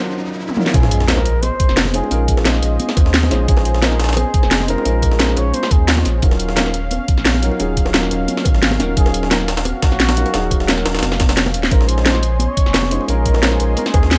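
A rolling, straight 4/4 liquid drum and bass groove settles in after a short riser and sub drop, with a knocking electronic kick, a cracking drum kit snare with bright hats and toms, and a gritty, pitched-up sampler-style breakbeat layered alongside soft-handed bongos and congas in the background, the kick dropping out briefly at 11.4 seconds for a fill. A deep, round sine sub bass holds the low end while a dark, mellow grand piano with delay and a detuned sawtooth pad with chorus drift between minor chords. Over this dreamy bed, a breathy, whispered flugelhorn with light vibrato and scooped notes sings an intimate jazz-style solo, all set in light digital reverb.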